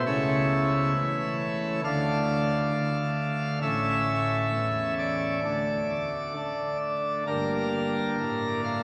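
Classical chorale-style music with a solemn, dark mood, this brief rubato fragment of a longer piece features a solo pipe organ on a full plenum with mixtures, its brilliant baroque voicing and audible chiff placed up front, set in a deeply wet cathedral reverb under a layer of vinyl crackle.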